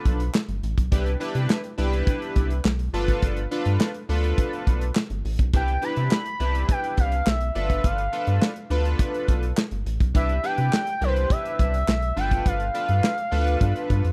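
A glossy, detuned polysynth opens this smooth, danceable early-eighties boogie funk excerpt over alternating G7 and Cmaj7 chords, joined at once by a rubbery, nasal square-wave bass, a punchy acoustic drum kit in a pumping studio room and dry, close group handclaps, before an expressive portamento lead with vibrato, chorus and tape echo enters up front at 5.6 seconds.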